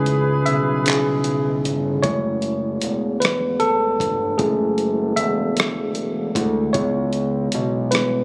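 A slow, yearning late-night R&B excerpt in 6/8 at 51 BPM in F# minor opens on a break, where a distant, punchy horn section with light vibrato stabs over a worn, slightly out-of-tune electric piano played through a combo amp, a fat, detuned analog bass with a moving notch filter sweep, and a gritty sampler-style soul kit with a thumpy kick, handclaps, hi-hat and rim click. The horns stop at 1.6 seconds, and from 2.0 seconds the up-front electric piano takes a solo as the harmony moves from C#m7 to F#m9 and back to C#m7 at 6.7 seconds. Club reverb and light digital ambience wrap this phone-in-the-room recording in a compressed sheen.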